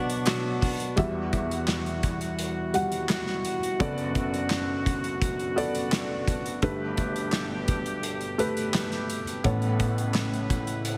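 A felt-muted upright piano opens this driving, bittersweet piano-driven pop excerpt with mellow, intimate accompaniment, together with sustained chords from a vintage-toned brass section with light vibrato and a brief, clean, direct-recorded electric guitar riff that stops at 1.0 s. A loose indie drum kit enters at 0.1 s with a punchy kick, medium-tuned snare, hi-hat and handclaps, its rolled-off top sitting up front in a pumping room. The whole mix is bathed in a lush hall reverb and squeezed into a heavily compressed radio sound as the chords move from Bm through Emadd9, Bm7/F# and Gadd9 to Aadd9.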